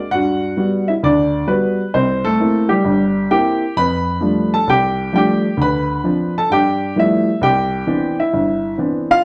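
A warm baby grand piano opens this short solo jazz excerpt, carrying the whole performance alone from 0.0 to 9.2 seconds with a relaxed, easy mood. The tempo sits at 132 BPM in 4/4, with a swung eighth-note feel that keeps the phrasing loose and conversational. The harmony drifts through Gmaj7, C7, F69, Dm7 and G13 before settling on Cmaj9 near the end, spanning a range from the low G1 up to B5. The piano's tone is natural and sits up front, even as a wet club reverb with a short 0.8-second tail places the listener further back in the room. It comes across as an intimate snapshot lifted from a longer piece, like catching a pianist mid-set in a small venue.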